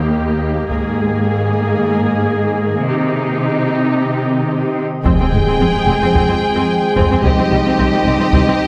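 A moderate concert-hall reverb surrounds this relentless, brooding hybrid orchestral and electronic film-score cue at 110 BPM in 4/4, cut from a longer piece. Up-front bowed cellos carry the bass beneath rich violas with vibrato and a glassy, ethereal FM pad with ensemble chorus, while close, dry taiko struck with hard sticks land a brief burst at 0.7 seconds. At 5.1 seconds the taiko return with a huge, bright impact, and lush violins take the high melody and a second line over distant double basses and warm horns sustaining chords in the background, as the harmony moves from Fmadd9 to Cm.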